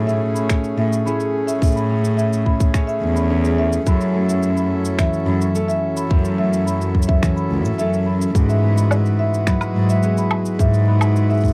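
Dry, close 1970s-style studio sound with vinyl crackle frames this hopeful, pastoral folktronica fragment at 107 BPM in 4/4, where a reedy, breathing harmonium holds sustained chords through Amaj7, F#m7 and Eadd9/G#, a ringing, fingerpicked concert harp spins arpeggios through tape echo, a single sul tasto cello with light vibrato and an airy bow carries the bass up front with tube saturation, a marimba played with medium mallets adds a full second line roughened by vintage 12-bit sampler grit and tape echo from 0.1 seconds, overdriven electronic shaker, finger snaps and woodblock re-recorded in a small room join at that same moment, and a tight electronic kick drum enters at 0.5 seconds.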